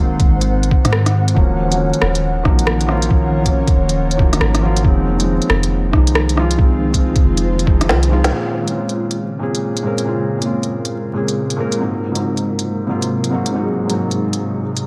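A felt-muted upright piano sits up front in this rainy, nocturnal future garage excerpt, its soft, intimate accompaniment roughened by vintage 12-bit sampler grit, pumping against the sidechain and trailing dub echo through a low-pass filter. Moving at 138 BPM in 4/4 with a 63% swing on the sixteenths, the piece sits in Bb minor with tuning at A4 = 435 Hz, drifting through Ab7, Ebm7, Fm7 and Bbm7 before returning to Ab7. An ethereal, airy pad of detuned sawtooth and triangle voices holds sustained chords throughout, softened by ensemble chorus and built-in reverb, and from 8.3 seconds a filter sweep moves across it. A deep, round 808-style bass with tube saturation and a pitched-down, thumpy kick carry the low end until the kick drops out at 7.9 seconds for a drum fill, and the bass stops at 8.3 seconds. A woody snare, smooth hi-hats and rim clicks from an organic electronic kit stay close to the listener through the whole passage, all beneath light reverb and a steady layer of vinyl crackle.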